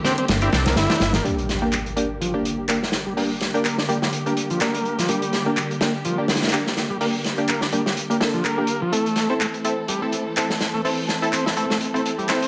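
A raw breakbeat cut with light small-room ambience, where a saturated, dark acoustic break kit sits up front beside a layered electronic garage kit of handclaps and hi-hat, while a fat, detuned sawtooth analog bass and very quiet congas play only until 1.2 seconds, when an electronic impact lands and filter sweeps begin on the buzzy, overdriven combo organ riff with tape echo, the nasal, band-passed chord stabs carrying chorus and vintage 12-bit sampler grit, and the distant, lush bowed string section holding sustained chords.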